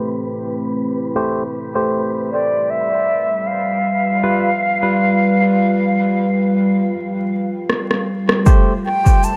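Ambient dub at 78 BPM in 4/4, with a gentle 16th-note swing and a hazy, deep mood, this short cut from a longer piece moves from Am7 to G7 and back to Am7. A deep, dark pad holds sustained chords up front with chorus and its own reverb, while a barky tine electric piano adds overdriven stabs through a low-pass filter and dub echo, both parts carrying a filter sweep through the first 8.5 seconds. A mellow, wind-like noise texture breathes in the background until 6.9 seconds, and a woody, airy flute enters at 2.3 seconds with a close-miked, vibrato-touched melody trailed by dub echo. During the break, overdriven electronic rim clicks and shaker, re-recorded in a large room, bring a drum fill from 7.7 seconds, and a layered, overdriven kick lands up front as the chord returns to Am7. Vinyl crackle, a low-pass filter and light digital ambience give the whole mix a dusty, submerged character.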